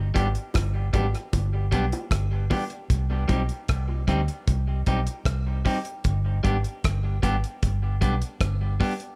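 Dub reggae in a meditative, heavy mood, this short cut from a longer piece sets a dark, round, foam-muted fingered electric bass up front alongside a slightly broken-up, picked and compressed electric guitar soaked in dub echo, a cloth-damped, thuddy drum kit with tight kick, rolled-off top, hi-hat and rim click, and low-tuned bongos under soft hands that echo in the background until 3.5 seconds, all moving from G to C minor and back to G in a dry, echo-heavy mix.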